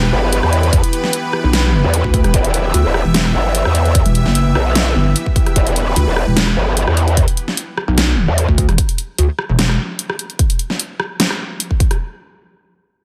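This menacing, aggressive dubstep drop opens in a half-time feel. A lush, detuned sawtooth pad pumps under sidechain, beneath a heavy, pulsing pluck wobble bass with overdrive and an up-front electronic kit of hi-hat, rim click and a huge snare, while a bright, saturated growl bass snarls through a formant filter almost at once. A punchy layered kick arrives at 0.7 seconds, the pad drops out at 7.2 seconds and the growl at 8.5, and the drums carry on to the close of the excerpt in light digital reverb with a small-room sound.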